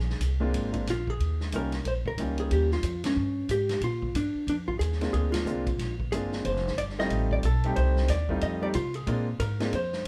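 A band playing live in one room comes across with moderate studio reverb, giving this short cut from a longer small-group swing and bop tune a lively, natural space. At 183 BPM in 4/4 with a 62% swing on the eighths, the mood is swinging and playful, moving through Bb7, Eb7 and F7 changes in Bb mixolydian. A dark, clean, compressed hollow-body electric guitar carries the picked melody, while an up-front pizzicato upright bass sounds woody and thumpy with steel strings. The big-band drum kit sits distant and roomy, with ride cymbal, hi-hat, a medium-tuned snare and a boomy kick under a rolled-off, warm top. A clear, polished baby grand piano comps up front, pausing briefly and returning at 5.0 seconds, and the whole band hits accents at 3.0 and 5.3 seconds.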